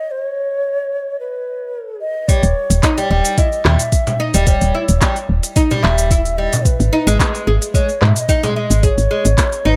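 A straight 4/4 pulse at 110 BPM drives this hypnotic organic downtempo excerpt, where a hollow, vibrato-tinged bamboo bansuri with tape echo plays the melody alone until 2.3 seconds, when a bright, plectrum-plucked fretless oud adds echoed arpeggios, a soft electronic kick and a small-room kit of crisp filtered hi-hat, cabasa and handclaps arrive alongside an up-front, round, dark FM bass, and a small, saturated frame drum played with soft hands joins at 3.7 seconds, all under light reverb over a D#7b9 that settles to G#m.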